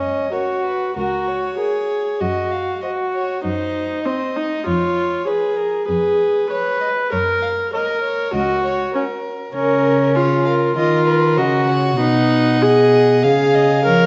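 Graceful and cheerful, this fragment of a classical-period string quartet movement unfolds with a gently rubato feel, its bowed gut strings carrying a reedy, period-style tone. The first violin sings the melody while the second violin, entering at 0.3 s, adds a second line; the viola, played with light vibrato, sits up front in the accompaniment, and a close, rich cello anchors the bass. A dark, warm production is bathed in wet recital-hall reverb.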